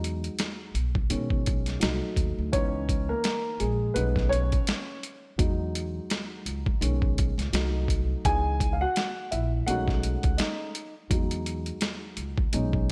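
A dark, mellow upright piano plays solo from the first moment of this smooth, cool jazz-hop cut at 84 BPM with a swung 16th-note feel, moving through Emaj9, B69, Cdim7, C#m7 and B13 over a woody pizzicato upright bass and a gritty, overdriven boom bap sampler-style kit with a thumpy kick, medium-tuned snare and hi-hat, compressed and up front, the whole mix set in light reverb and small room ambience.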